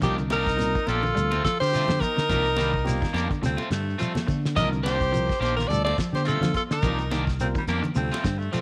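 A studio ambience frames this short afrobeat excerpt in C dorian, moving at 106 BPM in 4/4 with a light sixteenth-note swing and a defiant, hypnotic mood as the harmony sways between Cm9 and Dm7. The bright alto saxophone leads up front with scooped notes and light vibrato, while a bright, close-miked trumpet carries a second line with slapback echo, both horns dropping out at 7.2 seconds. From 2.6 seconds a raspy, gritty baritone saxophone joins on its own second line, sounding distant and roomy. Underneath, a round, punchy fingered bass anchors the groove against a damped 70s drum kit with a fat snare, tight kick and rolled-off top. Two guitars fill the middle: a clean one picking arpeggios in the background and a twangy, slightly broken-up one hitting stabs through slapback echo, joined by a tine electric piano in accompaniment. High-tuned, ringing congas and a grainy shekere sit further back, adding acoustic texture to the steady pulse.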